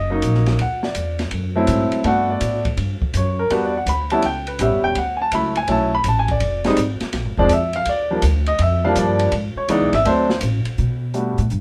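A short excerpt cut from a longer piece, this recording has a moderate club reverb around a jazz piano trio, with piano and bass sitting up front. It is a relaxed, sophisticated swing tune at 165 BPM in 4/4, with the eighth notes swung. The grand piano takes the melody from the start, its tone warm, ranging from E3 to B5, and it carries a solo through the first 10.8 seconds over changes that begin on a rootless Bmaj7 and move through D7, Gmaj7, Fm, A#7 and D#maj9 before landing on Gmaj7. The upright bass is plucked, woody and steel-strung, playing low between E1 and B2. The drum kit enters at 0.2 seconds, played on hi-hat, kick, ride and snare, and sounds dark and smooth, with dusky cymbals, a medium-tuned snare, a boomy kick and a rolled-off top, sitting softer behind the other two.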